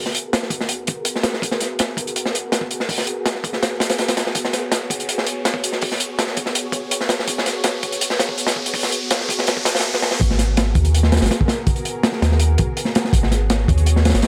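Dark and atmospheric, this excerpt of drum and bass with jungle roots moves at 164 BPM in a straight 4/4, sitting in G# minor over a single G#m9 chord. A soft, silky string machine holds sustained chords with a slow attack, long release and ensemble chorus, its vintage tone shaped by a filter sweep across the build-up, while an electronic riser climbs in the background from 0.8 seconds. Up front, a crunchy breakbeat kit of kick, snare and hi-hat sounds gritty and saturated, with a punchy kick, a medium-tuned snare, a rolled-off top and a small-room character. Beneath it, a deep, round dub sub bass with a fast attack and tube saturation holds the low end just as prominently. A drum fill at 9.9 seconds leads into the drop at 10.2 seconds, where the riser stops and the kit, bass and strings carry on under light reverb.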